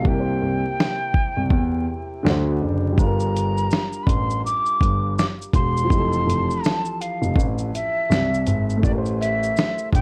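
A swung 82 BPM lo-fi hip hop groove in 4/4 rides on a gritty, compressed sampler-style kit of thumpy kick, medium-tuned snare, hi-hat and shaker, with a dark, mellow grand piano carrying the bass, both entering at 0.1 seconds, in this reflective, nostalgic excerpt in G dorian. A woody upright piano with long sustain plays the accompaniment through a low-pass filter over chords such as C7, Gm7 and Fmaj9. Up front, a breathy metal jazz flute carries the melody with vibrato and an unsteady, soft attack, shaped by a low-pass filter and plate reverb, while vinyl crackle and light reverb lend the production a dark, warm air, with a break opening the first 3.0 seconds.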